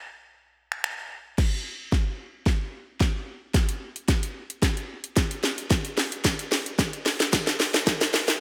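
A house drum kit opens the piece at 0.7 s: an electronic, layered sound with a punchy kick, cracking snare, metallic hi-hats, finger snaps and crash cymbal, placed up front and treated with gated reverb. This is pop at 111 BPM in a straight 4/4, with a euphoric, summery mood. From 1.4 s the music moves into a build-up, driven by a drum fill and a filter sweep that continue to the end of the clip. A jingly, vintage acoustic tambourine enters at 6.2 s, very quiet and band-limited beneath the kit. The overall production has a bright 1980s-style digital sheen, with light reverb, digital ambience and a high-pass filter, and the recording is cut from a longer piece.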